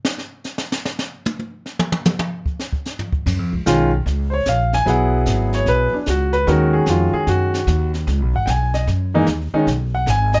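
Swinging and sophisticated, this jazz piano trio fragment opens with a brushed drum solo of dark cymbals, a high-tuned snare and a boomy kick in an airy, lightly reverberant studio room, before a growly, woody pizzicato upright bass joins at 3.3 seconds and an intimate grand piano, its action noise audible, takes the melody at 3.7 seconds over chords moving from a rootless F#maj9 through E6/9 and D#m9.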